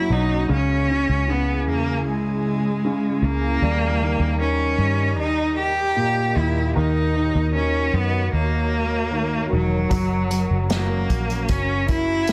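Tender and heartfelt, this pop ballad excerpt is led by a single bowed cello, rich and smooth with vibrato, carrying the melody up front over open, long-sustaining chords from a baby grand piano. An ethereal pad with ensemble chorus, tremolo and built-in reverb hovers in the background, while a dark, foam-muted fingered electric bass adds a round, punchy low end. At 9.9 seconds a roomy acoustic drum kit played with bundle sticks enters with hi-hat, tight kick and snare, all under a dense, heavily limited modern master.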